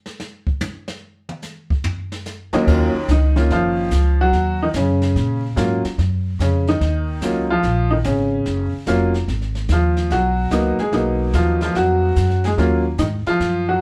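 This jazz piano trio excerpt swings at 145 BPM in Eb minor with a late-night mood. Brushed drums with a boomy kick open the piece at 0.1 s, and at 2.5 s a slightly detuned, vintage-sounding upright piano carries the melody up front while a thumpy pizzicato upright bass holds the low end. The harmony settles on Ebm7 before moving to Abm7 at 9.3 s, all set in a moderate studio reverb that places the trio further back in the room.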